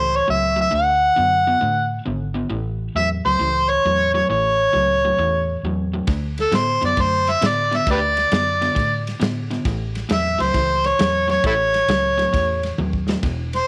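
Electric blues shuffle in A major at 134 BPM, swung in 4/4 with a laid-back, swaggering mood, cut from a longer piece. An amplified, overdriven harmonica carries the melody up front, gritty and jazz-styled, with light vibrato, tongue slaps and scooped notes as it plays solo over the changes from A to D and back. Underneath, a dark, picked semi-hollow guitar with overdrive holds down a low riff, while a vintage fingered bass, foam-muted, round and punchy, anchors the bottom. A dry soul drum kit joins at 6.1 seconds with tight kick, medium-tuned snare, toms and a ride with dark cymbals, its top rolled off and smooth. The drums play a fill at 12.8 seconds, and the whole mix sits in a light studio reverb.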